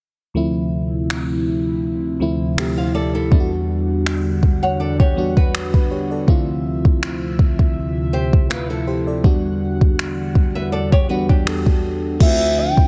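Sensual and moody, this contemporary R&B piece moves at a relaxed 81 BPM with a light swing in D dorian, alternating between Dm9 and Em9 chords. A glassy, bell-like FM electric piano and a shimmering, dark pulse-width pad with subtle chorus and sidechain pumping carry the harmony. A soft-kicked, up-front electronic drum kit with crash cymbal and finger snaps joins them. From 2.8 seconds, a fingerpicked flamenco guitar adds arpeggios through digital delay, and at 12.2 seconds a smooth, gliding sine lead with vibrato and a clear, classical-style bass clarinet enter briefly, all set in digital ambience with a dense, heavily limited modern master.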